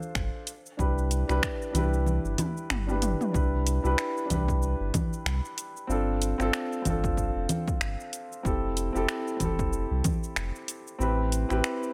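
Sunset chillout at 94 BPM with a relaxed, wistful mood and a swung 16th-note feel, where a dark, mellow concert grand piano with tape echo moves through Cmaj7, G7sus4, Fmaj7 and Am7 under a filter sweep for the first 3.3 seconds, over a round, sine-like sub bass with tube saturation and an up-front, layered deep house kit of congas, finger snaps, hi-hat, shaker and toms, joined by a punchy electronic kick; the kit and kick both carry overdrive, the kick drops out from 2.1 seconds as a drum fill arrives at 2.4 seconds, and the whole short excerpt sits in a digital ambience.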